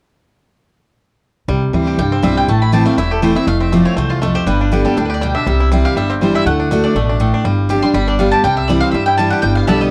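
Bluegrass with a joyful, rustic feel, this brief cut from a longer piece moves at a brisk swinging clip. A bright, twangy banjo played with fingerpicks carries the melody from 1.5 seconds, its percussive tone sitting back in the mix, while a full-bodied dreadnought guitar with fresh strings sits up front, picking the accompaniment with audible finger squeak. An upright bass plucks a thumpy, woody low line underneath, and a mandolin with doubled strings joins the melody at 2.0 seconds, then adds a few quick stabs near the close. The harmony moves through a cheerful major-key progression, leaning on a suspended dominant before settling home. Moderate studio reverb surrounds the band, and the whole recording carries the warbling pitch drift of worn old cassette tape.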